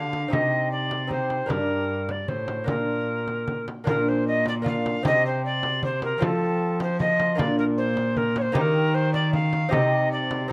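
A closely miked, detailed recording with light reverb presents this short cut from a longer renaissance-style consort dance, courtly and stately in a straight 3/4 at 154 BPM. The alto recorder carries the melody between A4 and F5, its airy, woody, warm tone marked by a crisp, chiffing attack and vibrato, sitting up front yet with a slightly distant air. Beneath it, a fingerpicked lute supplies delicate accompaniment from G2 to Eb5, its double gut strings, some doubled at the octave, giving a warm shimmer. A single bowed cello anchors the bass between G2 and F3 with a dark, nasal, reedy gut-string tone in period style, smooth at the top. A small frame drum, bright and dry, enters at 0.1 seconds under soft hands, and the opening phrase returns at 3.9 seconds as the harmony moves from C minor through G minor and B-flat toward F, E-flat and back to C minor.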